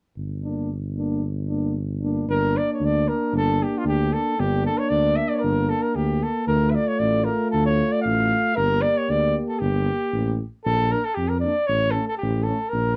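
Fiery and virtuosic, this Balkan brass band piece in G minor, cut from a longer work, drives along at 115 BPM in 2/4 with a swung sixteenth-note feel. A dark, punchy tuba anchors the bass from 0.2 seconds, sitting up front, while a shadowy, roomy euphonium and a mellow, smooth-topped French horn fill in the accompaniment from 0.4 seconds, the horn tucked in the background. At 2.3 seconds a flugelhorn takes the melody, up front yet distant and roomy in tone, with a light vibrato and a classical poise. The harmony moves from G minor to D minor and back, then turns to B-flat and A in the closing stretch. Light reverb and a dark, warm production surround the ensemble.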